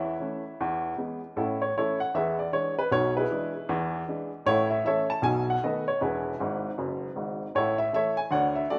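A woody, polished upright piano plays solo from the first moment, sitting up front with short, present notes that span deep bass to the upper register in a swinging, playful stride jazz fragment. A wet echo chamber reverb surrounds the piano, and a brief piano fill from 6.4 to 7.5 seconds leads back to the home chord before the clip ends at 8.8 seconds.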